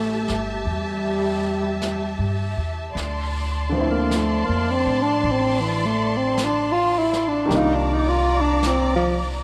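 Moderate plate reverb and lossy compression artefacts color this short slice of a longer jazz piece, which moves slowly at 53 BPM in 4/4 with swung eighths in D minor and a melancholic, smoky mood. Up front, a breathy, close-miked tenor saxophone carries the melody in a dark subtone, with vibrato, soft attacks and scooped notes, a slapback echo trailing its whispered phrasing, and it takes a solo from 3.0 s. Behind it, an intimate baby grand piano sits in the background with short sustain and audible action noise, while a warm, lush bowed string section holds sustained chords with expressive vibrato. A woody, thumpy pizzicato upright bass on gut strings anchors the low end, and a brushed drum kit of snare and hi-hat enters at 0.3 s with a natural studio-room sound. The harmony moves from A7 to Dm7 at 3.0 s and on to Cm11 at 7.5 s.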